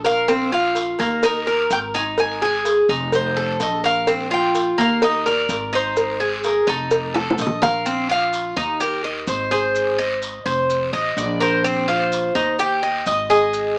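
Danceable and warm, this excerpt of Cuban son and guajira in 4/4 sets two bright, metallic tres parts with double strings side by side: one picks arpeggios over a cycling Bbsus2, Eb, Ab and F7 progression, while the other carries the melody up front. Beneath them, a woody, thumpy pizzicato upright bass on gut strings anchors the low end, a raspy guiro sits in the background and very quiet, grainy maracas run throughout, while round, low-tuned cowbell and bongos, played close with hard hands, lead into a drum fill at 7.1 s and drop out at 7.7 s, just before the section begins again. Light reverb and a small-speaker sound shape the recording.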